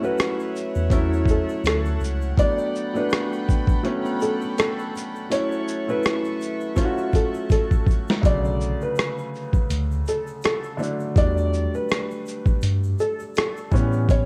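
A hazy, reflective lo-fi hip hop piece in B minor opens with a soft, felt-muted upright piano carrying both a melody and an intimate accompaniment whose action noise is audible. Distant, floating strings hold sustained sul tasto chords, while a grainy egg shaker sits in the background. A gritty, compressed boom bap drum kit enters at 0.2 seconds, up front with a thumpy kick, a medium-tuned snare, hi-hat, rim click and its own shaker, all sounding re-recorded in a small room. The groove moves at 82 BPM in 4/4 with a lazy swing on the sixteenths. A mellow, clean tine electric piano plays a brief bass line from 0.8 to 2.3 seconds as the chords drift through Dmaj9, Gmaj9 and F#m7 before a drum fill. The strings stop at 8.2 seconds, when the electric piano returns to carry the bass line over Bm7, Em11 and A7. The whole recording has a worn cassette character, with warbling pitch drift and a light reverb, and this passage is cut from a longer piece.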